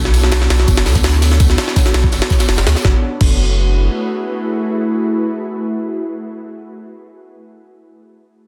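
Compressed, pitched-up jungle drums with a thumpy kick, high-tuned snare, hi-hat, crash and ride sit up front in this raw, dark drum and bass excerpt at 166 BPM in F# minor, alongside a deep, round dub sub bass that sounds from the start until 3.9 s, a faint acoustic kit of hi-hat, snare and tambourine in the background, and an ethereal, detuned pad with ensemble chorus and vintage 12-bit grit sustaining Bm9 and then F#m11 from 2.8 s, all set in a moderate echo-chamber reverb with a dense, heavily limited master.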